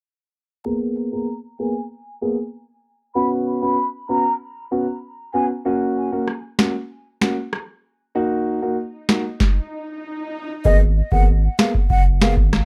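A straight 4/4 dancehall groove at 96 BPM kicks in at 6.3 seconds on a booming, overdriven analog drum machine with deep kick, crisp snare, rim click and finger snaps, giving this hypnotic, bouncy piece its pulse. Up front, a dark, boxy grand piano moves through Abmadd9, Bsus2, Gb and Ebm under a filter sweep while a breathy, hollow concert flute with tape echo carries the melody, both parts low-pass filtered, and an electronic swell leads into the next passage. At 10.7 seconds a thick, saturated sine sub bass joins as the flute returns, all in a dry, up-front mix.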